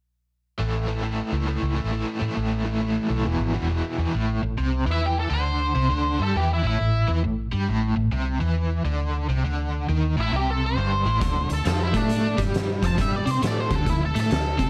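A driving, raunchy slice of blues rock with a southern rock lean opens at 0.6 s with an overdriven, double-tracked electric guitar riff up front, shimmering with tremolo over a dark, round, foam-muted fingered bass. At 136 BPM in a swung 4/4, the harmony moves from A to E before settling into A5 and later D5. A picked octave-fuzz lead guitar cuts in at 4.9 s with a distorted, shadowy tone coloured by wah and slapback echo, returning later for the closing stretch. At 11.2 s an oversized, low-tuned acoustic kit arrives with a fat snare, punchy kick and hi-hat, its saturated, gritty sound carrying a rolled-off top and a bright stone-room character. Light studio reverb gently surrounds the trio, and the piece is cut from a longer performance.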